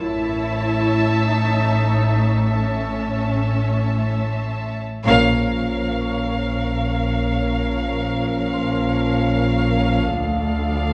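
Bathed in a wet, churchlike hall reverb, this ominous, eerie excerpt of suspense film score drifts in free time in Bb harmonic minor: veiled, con sordino chamber violins carry the melody over a lush symphonic violin second line, close violas, distant cellos and up-front double basses, while a ringing, thumb-plucked harp glints in the background, a very quiet high violin texture drops out at 4.7 s, and a dark French horn section enters at 5.1 s with sustained chords as the whole ensemble accents the move from A to Bbm, closing on Dm.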